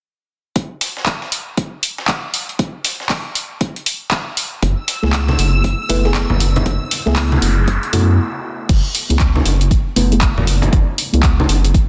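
Deep house at 118 BPM in F# minor with a 16th-note swing, moody and late-night, this section cut from a longer piece opens at 0.6 seconds on an F#m11 chord with a punchy, layered electronic kick and tape-toned analog drum machine claps, hats and crash up front, while a gritty, sampler-style kit with a fat snare and pumping hats sits in the background. At 4.6 seconds a rubbery, hollow square bass enters, saturated and pumping, with a shimmering, bright string machine of violins up high, followed by soft, deep chord stabs with chorus, delay and a vintage warble, and ringing, distant congas struck with hard hands. An electronic noise sweep leads into a brief stop at 8.2 seconds, after which the stabs carry a filter sweep through the closing section as the gritty kit and strings drop away, all under light reverb and a dense, heavily limited master.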